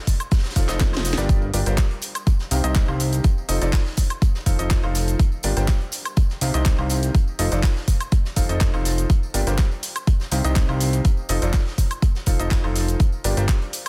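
Piano house at 123 BPM in straight 4/4, centred on F mixolydian, with an uplifting, joyful mood in this short cut from a longer piece. A punchy, up-front electronic kick drives the groove from 0.1 seconds, layered with a tape-tinged house kit of handclaps, hi-hat, shaker, woodblock and a cracking, softly clipped snare, both re-recorded in a large room. Behind them sit a very quiet, distant soft-mallet kit with a rolled-off top and a close, dry tambourine. A clear but worn grand piano riff enters at 0.6 seconds, roughened by 12-bit sampler grit, pumped by sidechain compression and trailed by dub echo, cycling through F7, Gm7 and Cm. Underneath, a fat, detuned sawtooth bass with tube saturation, a filter sweep and the same sidechain pumping holds the low end, all in a dense, heavily limited modern master with small room ambience and a drum fill at 0.8 seconds.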